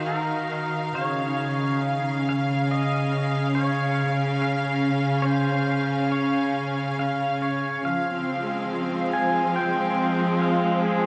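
A clear, earthy studio string section sits up front, its bowed ensemble sound carrying sustained chords with light vibrato and a slightly biting edge, bathed in shimmer reverb. Alongside it, a clean electric pedal steel guitar plays the melody from start to finish, its twangy, compressed tone shaped by fingerpicks, slide and volume swells, and trailed by shimmer reverb and tape echo. This ambient piece moves at a slow 70 BPM in a straight 4/4, and its mood is peaceful and serene. The harmony opens on Ebmadd9, settles onto Db at 0.9 seconds and moves to Fmadd9 at 7.9 seconds. A wet cathedral reverb places both parts in a vast, echoing space, and the recording is a short section cut from a longer piece.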